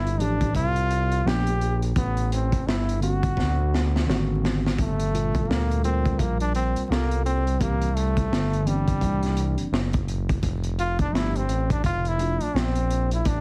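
Nocturnal and cool, this swung jazz-hop excerpt sets a smooth, gliding, wave-folded synth bass and a mellow tine electric piano under a crunchy, saturated breakbeat kit and a bright, punchy trombone melody heard from the opening. The kit's fill at 3.4 seconds ushers the trombone into a solo from 4.8 seconds, its scooped notes and vibrato ringing in plate reverb, all inside a heavily compressed, radio-like sound dusted with vinyl crackle.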